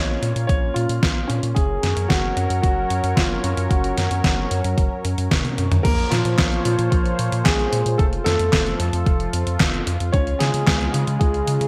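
Italo disco in B-flat minor at 112 BPM, this bittersweet, nostalgic passage sets a dark, mellow baby grand piano melody with digital delay over a smooth, warbling analog pad in sustained chords and a round, deep analog bass with tube saturation, moving from Bbm and Gb to Bbmadd9, F and Db. A clean 12-bit drum machine brings a fat, up-front snare with gated reverb, handclaps, hi-hat, toms and crash from 0.2 seconds, a thumpy electronic kick joins at 0.5 seconds, and a drum fill at 5.3 seconds leads into the second section. The bright 1980s-style digital production sits in a moderate plate reverb with a layer of vinyl crackle.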